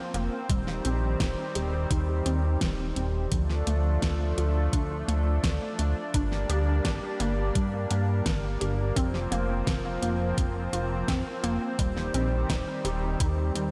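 Nostalgic and cinematic, this synthwave passage, cut from a longer piece, sets a thick, detuned sawtooth pad holding sidechain-pumped chords up front over a dark, glossy pulse-wave synth bass, while a lo-fi, warbling pluck arpeggiates through ensemble chorus and delay in the background, a pop kit adds a fat snare and metallic hi-hats, and a thumpy, tape-toned electronic kick enters at 0.5 seconds, all bathed in a dreamy hall reverb as the harmony moves from Cm/Eb through Dm, Gm and Fsus4 back to Cm/Eb.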